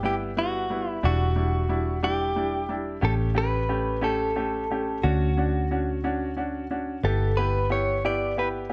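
Romantic and swaying, this short pop passage in 6/8 carries a clean, compressed electric guitar melody, picked and recorded direct, over the brilliant, woody chords of an upright piano whose short sustain and audible action noise make it feel intimate. Underneath, a vintage fingered electric bass, foam-muted and round, adds a dark, amped foundation as the harmony moves from G6 through Em7, A7 and Dmaj7 before returning to G6 at 7.0 seconds. All three parts sit up front in a small room with light reverb.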